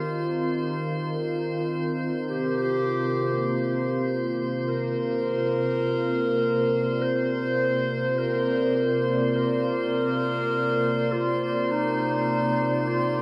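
Spacious, melancholic ambient music at 51 BPM in 4/4, tuned to A4 = 435 Hz and cut from a longer piece, in which a mellow, distant classical-style solo clarinet carries the melody through diffuse ambient delay over an up-front, detuned sawtooth analog pad holding bright, smooth chords with chorus, tremolo and a filter sweep, while a glassy sine texture of drifting overtones fades in with chorus and its own reverb, all moving from Cm to a rootless Gm/C at 2.3 seconds inside a huge, wet reverb with an 8.8-second tail.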